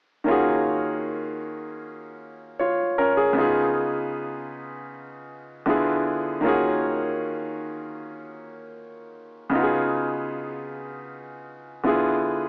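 A home cassette recording with an AM-radio character, bathed in a lush hall reverb, frames this short cut from a longer soul piece. A clear grand piano plays alone from 0.2 to 12.5 seconds at 78 BPM in Eb minor, its natural, up-front tone carrying a short sustain and its own tape coloring as it moves through Ebm11, Db7 and Ddim7 chords. The mood is smooth and silky, with the piano spanning Db3 to Db5 in a straight 4/4 feel.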